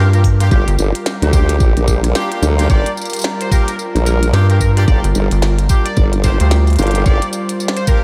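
A warbling, nostalgic tape-like pad pumps on a Gm7 chord beneath an edgy, tearing sync lead with 12-bit grit and delay, brilliant horn stabs and a rubbery, nasal square bass that drops out at 0.8 seconds and returns at 4.3 seconds, while a chorused formant-sweep wobble bass, an up-front knocking electronic kick and an overdriven glitchy kit of clicky hats, tiny snare, rim click and tambourine drive this swaggering, playful glitch hop excerpt at 110 BPM in G minor with swung 16ths.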